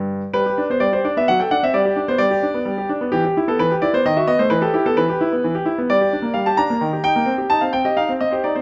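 Restless yet elegant, this short passage from a classical-period piano sonatina moves in 3/4 at 130 BPM with a rubato feel, centered in G major. A solo concert grand piano, brilliant and up front with a deep bass, plays throughout, spanning G2 to Bb5 as the harmony turns from G through E minor and then darkens into G minor around 5.9 seconds, moving on to E-flat and reaching C minor at 7.3 seconds. The instrument sits in a moderate recital hall reverb that lends a natural sense of space.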